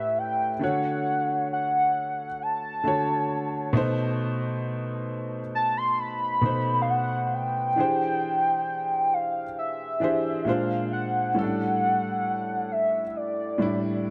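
Romantic and dreamy, this short R&B fragment pairs a velvety, wave-folded synth lead carrying the melody with chorus, delay and vibrato over an intimate concert grand piano whose deep bass and audible action noise sit up front, moving through lush chords like Dmaj7, B7b9 and E7alt in a small, lightly reverberant room.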